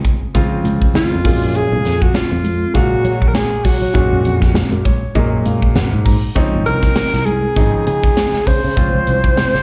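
This sounds like a live club gig heard through the venue's PA, with a touch of room ambience over a fairly dry mix. It's a funky, bright electric jazz fusion excerpt with a swung sixteenth-note feel, cut from a longer piece and moving through lush major-ninth chords. Up front, a breathy alto saxophone carries the melody in a close-miked jazz solo voice with vibrato and a soft subtone. A crisp, polished fusion drum kit drives the groove with a high-tuned snare, punchy kick and hi-hat, while thick-skinned congas played with soft hands sit dry in the background. A growly fretless electric bass arrives at 0.2 seconds, sustaining notes with a subtle chorus. A warm, natural baby grand piano with short sustain and slapback echo supplies the accompaniment, stepping forward with a fill from 4.6 to 6.4 seconds.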